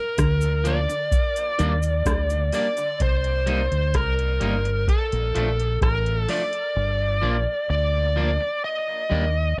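Dub reggae with a deep, spacious mood, this short cut from a longer piece moves at a slow, straight pace in 4/4 through a minor-key cycle of seventh chords. Up front, a bluesy overdriven lead guitar carries the melody from the start, its distorted, picked tone soaked in dub echo and a cassette-tape grit. Beneath it, a deep dub fingered electric bass sits round, dark and punchy, while a soft vintage rhythm box supplies an analog kick, metallic hi-hat and rim click until about 6.7 seconds. An electric guitar with an envelope filter plays a bright, twangy riff in the background, lush with chorus and echo, only until 2.3 seconds, and a compressed, saturated cabasa adds brief texture early on. A bright, slightly broken-up electric guitar picks out accompaniment with its own dub echo, all set in light reverb with the hazy feel of a home cassette recording.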